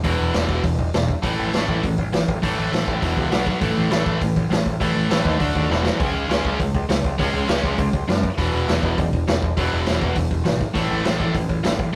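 A raw garage drum kit drives this straight, upbeat punk rock clip with a punchy kick, a gritty, saturated snare and hi-hat in a small, pumping room, throwing in a fill at 5.7 seconds. Over it, a sludgy, double-tracked guitar riff sits up front with a bright overdriven edge, moving through power chords on E5, A5, B5, D5 and C#5. A growling picked electric bass, also overdriven, anchors the low end for a rebellious feel, all captured as a rough rehearsal-room recording with light reverb.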